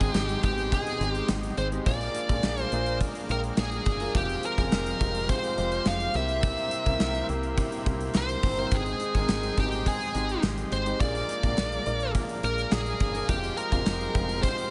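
A distorted, up-front lead guitar carries the melody through tape echo and shimmer reverb in this urgent, dramatic 1980s-style pop excerpt at 105 BPM in F dorian, over a chord cycle that moves from Abmaj7 through Bb7 and Fmadd9 to C7. A gated drum kit with a tight kick, medium-tuned snare, hi-hat and tambourine drives it alongside a dark, round fingered bass with tube saturation and a very quiet group handclap entering at 0.1 seconds. An intimate grand piano with audible action noise, a lush, chorused and detuned synth pad in the background and a faint overdriven rhythm guitar fill out the harmony in a small room with light reverb.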